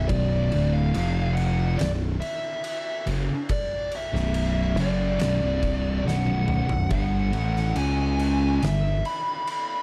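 Stoner and doom metal at a slow, straight 70 BPM in B minor, this hypnotic, heavy excerpt pairs a double-tracked, up-front fuzz riff guitar and a growling, overdriven bass with tube saturation against an oversized, low-tuned acoustic kit with a punchy kick, fat snare, dark cymbals and a pumping stone-room sound, while a compressed fuzz lead guitar with slapback echo carries the melody high above, a drum fill lands at 6.1 seconds, and the chords move from Bm through F5 to G5 and C#5 in a dark production with a small-room ambience.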